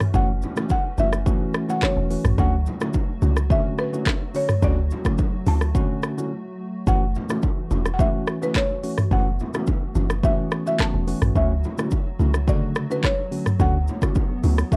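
A straight 4/4 afrobeats groove rides on an electronic, produced drum kit set up front, with a deep kick, crisp hats, handclaps, rim click, shaker and toms, while a round, percussive log drum bass with a fast attack and dark decay anchors the low end. Ringing congas and bongos sit distant in the background, played with soft hands in a large room. A clean, direct tine electric piano carries the accompaniment over an F#m7 to Dmaj7 progression, and a hollow, flute-like pad with ensemble chorus holds sustained chords softly underneath. A buzzing marimba struck with medium mallets sings the melody in an upper register, its hardwood bars sounding woody, dry and airy. The mood is sultry and mellow, with a short break between 6.3 and 6.9 seconds, and the whole cut from a longer piece carries light reverb and the worn, warbling pitch drift of old cassette tape.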